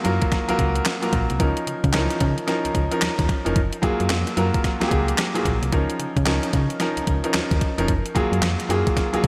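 A clear, up-front grand piano opens this upbeat, flirty new jack swing excerpt with swung Gbmaj9 and Db69 chords over a crisp 8-bit drum machine of thumpy kick, fat overdriven snare, handclaps and hi-hat treated with gated reverb, joined at 0.1 seconds by a punchy, round FM bass with a dark, decaying tone, all set in a lush hall and a bright 1980s-style digital production.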